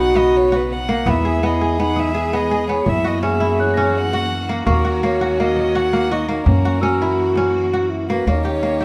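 Playful and shimmering, this passage of contemporary chamber music moves at 166 BPM in an uneven 5/4 with a straight feel, cut from a longer piece. A dark, intimate violin carries the melody, played sul tasto by one player with light vibrato, a soft attack and an airy, slightly boxy bow, while a mellow solo French horn in classical style shapes a second line beneath it. Up front, a crisp, ringing kora picks out fingerpicked arpeggios, supported by the woody pizzicato of an upright bass with steel strings. In the background, a bright, biting string section holds lush, intense sustained chords from a distance, a delicate, bell-like celesta adds sweet texture until 7.3 seconds, and a deep frame drum struck with hard hands enters at 0.2 seconds. The harmony travels from Badd9 through Emaj7, F#7 and D#m7, and a moderate studio reverb gives the ensemble a sense of space.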